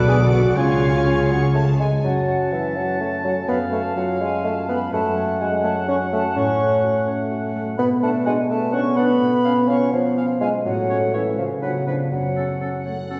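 In 6/8, this playful, whimsical film cue, cut from a longer piece, feels magical and mischievous as a ringing harp spins arpeggios beneath an up-front bassoon, a clear oboe, an airy flute group, a distant clarinet and a mellow French horn section, while the rich violin sections and the dark viola, warm cello and dark double bass sections sound only at the opening before dropping out by 2.0 s, with a violin melody returning at 12.9 s, all set back in a reverberant scoring stage.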